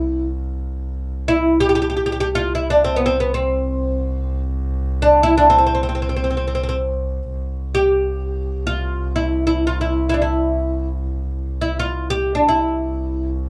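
Turkish makam ensemble music in free time and C makam rast, stately and warm, where a bright, woody fretless oud, plectrum-plucked on double strings, carries the melody up front until 13.3 seconds over an intimate, close bowed double bass drone on C2, played sul tasto with an airy tone and light vibrato, the two performing live together in a small room with moderate reverb.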